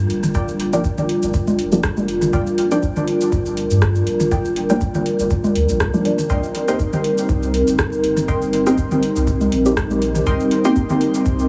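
Deep, mellow chord stabs with a nasal edge, filter sweep, phaser and dub echo pulse over a dark, detuned analog pad and a clean sine sub bass in this deep, hypnotic dub techno cut at 121 BPM in G minor, where a muted, filtered dub chord stab with lush chorus and background electronic toms and congas pump with the sidechain alongside a deep electronic kick and a booming analog drum machine with metallic hats, cabasa and rim click, all beneath vinyl crackle and a heavily compressed radio sound as the chords move from Gm7 to Cm7 at 6.3 seconds.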